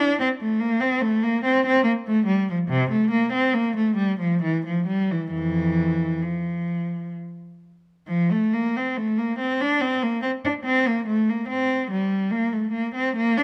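A solo cello, focused and bowed with vibrato and a smooth top, plays up front through close, detailed microphones and light reverb in this solemn, flowing baroque-style suite movement in F major and 3/4, moving with rubato at roughly 62-73 BPM from F2 to D4 and shifting into a new section at 8.1 seconds in a brief cut from a longer piece tuned to A4 = 435 Hz.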